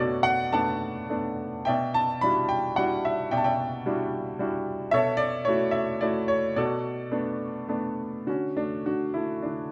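A clear, smooth concert grand piano plays alone for the whole 9.7 seconds of this short cut from a longer classical piece, its deep bass, vintage tone and short sustain sitting up front in a moderate recital hall reverb. The lyrical solo moves in 3/4 with a relaxed rubato at around 100-113 BPM in B minor, tuned to A4 = 444 Hz, spanning B2 to B5. Its mood is relaxed and sunny as the harmony drifts from Bm7 through Em9/B and F#m7/B back to Bm7, then shifts to a new section on D5 at 8.3 seconds.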